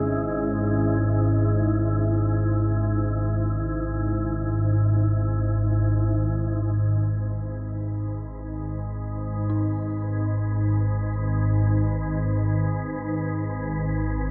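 A warbling, organ-like drone sits up front in G# minor, with a deep, wave-folded pad in the background holding a C#m/G# chord, a breathy, wind-like noise texture, and a very quiet, eerie FM bell tracing inharmonic arpeggios. This free-time dark ambient piece is cavernous and unsettling, bathed in huge reverb. At 6.8 seconds the pad stops as the harmony settles onto G#m, and a synth texture fades in through the close at 14.3 seconds of this fragment cut from a longer piece.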